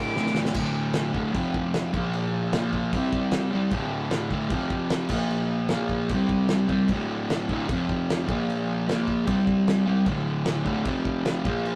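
A rough rehearsal-room recording with tube saturation and a moderate stone-room reverb gives this menacing, gritty garage rock cut from a longer piece its raw, enclosed feel, moving at 152 BPM in straight 4/4 in D minor. A double-tracked, compressed fuzz guitar sits up front from 0.0 seconds, playing a picked riff that cycles through D5, F5, Bb5 and C5 power chords. A cloth-damped, thuddy acoustic kit with a fat snare, tight kick, dark crash cymbal and rolled-off top enters with a short fill at 0.2 seconds and stays behind the guitar.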